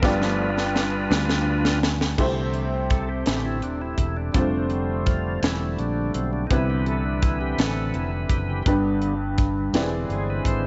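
Heard in a small room with light reverb and a rolled-off top end, this soulful, jubilant slow gospel fragment in 6/8 features a reedy, lightly overdriven tonewheel organ with key click and slow rotary speaker soloing throughout over a woody, slightly detuned upright piano, a dark, round fingered electric bass and a crisp, up-front drum kit with a punchy kick and high-tuned snare that plays a fill in the first 2.2 seconds, as the chords move from G7 through Cmaj7 to a closing E7b13.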